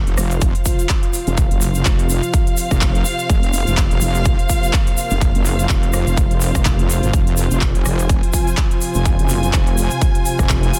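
Swaggering and bouncy, this bass house excerpt swings its sixteenths over a punchy, up-front electronic kick, with crisp hats, handclaps and rim clicks from a layered dance kit and a grainy egg shaker tucked in the background. A heavy, saturated wobble bass sits up front, while a detuned, wave-folded pad sweeps behind it with chorus and phaser, and a lush, woody string section adds bowed texture, both pad and strings breathing with sidechain pumping. A barely audible sub drop marks the opening impact during the first 1.4 seconds, and the whole is tightly limited with little reverb.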